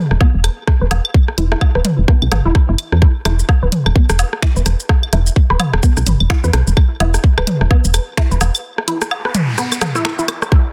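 A dry, dense and heavily limited mix carries this sparse, hypnotic stretch of swung minimal techno, anchored by a tight, up-front electronic kick and a round, woody FM bass that pumps against the sidechain. Two drum kits scatter claves, woodblock, toms, rim clicks, finger snaps, hi-hat and shaker around the beat, with dub echo trailing the organic kit, while a squelchy, bright blip pluck riff runs through a phaser, digital delay and sidechain pumping under a constant filter sweep. The bass drops out at 8.5 seconds for a break, a noise sweep enters at 9.0 seconds, and a drum fill arrives at 9.6 seconds.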